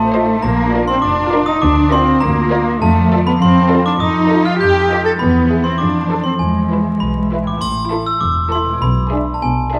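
Vinyl crackle and a moderate scoring-stage reverb frame this sneaky, mischievous film cue in A minor, cut from a longer piece and moving at 100 BPM in a straight 2/4. A bright, sparkling glockenspiel struck with brass mallets carries the melody up front over ringing, fingerpicked concert harp arpeggios, while a cello section with expressive vibrato and portamento sits forward and a rich, focused double bass section anchors the low end. Very quiet violins add a second melody and a smooth, even line, violas supply background accompaniment, and a small-room triangle enters at 7.6 s as the harmony moves from Bb and F7 toward E and A5.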